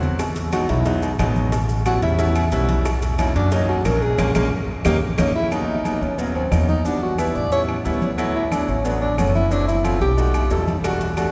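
A straight 4/4 Afro-Cuban jazz groove at 180 BPM runs through this sunny, lively excerpt, with damped, thick-skinned congas, ringing agogo bells and timbales, woody claves, grainy maracas and a tight, very quiet cowbell that drops out at 5.3 seconds, a drum fill and band accent marking the turn into the repeated section. A growly pizzicato upright bass sits up front beside a natural-sounding baby grand piano comping through lush extended chords such as Emaj7, Bmaj9 and B7b13. From 0.5 seconds a dark, whispered tenor saxophone solos with vibrato, subtone and scooped notes, close-miked and intimate, all washed in a long cathedral reverb.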